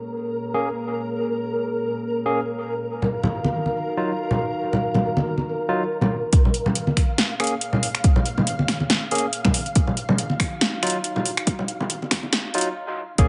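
A spring-reverb haze and digital ambience frame this cavernous, meditative deep dubstep excerpt, its top end capped at 10.7 kHz. A moody, detuned analog pad with lush chorus and a flickering, grainy texture open the piece, joined at 0.5 s by bright, barky tine electric piano stabs trailing dub echo, with acoustic, vintage congas following at 3.0 s. At 6.3 s a build-up and filter sweep arrive with an up-front, overdriven deep house kit of punchy snare, metallic hats and finger snaps over a layered electronic kick, before a stop at 12.8 s gives way to a brief touch of dark, sawtooth wobble bass at the very end.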